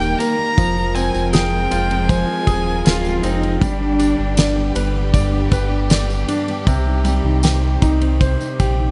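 A dark, woody solo violin sings a vibrato melody up front over clear concert grand piano, lush background strings, a full-bodied fingerpicked jumbo acoustic guitar, deep sine sub bass and a jingly tambourine in this emotional, heartbroken C minor pop ballad at 79 BPM, with a dry, damped 70s drum kit (fat snare, tight kick and ride cymbal) joining almost at once and an expressive cello section carrying a second line from 2.9 s to 5.1 s as the violin stops at 3.2 s, set in light reverb and a small room ambience over Eb, Fmadd9, G and Cm.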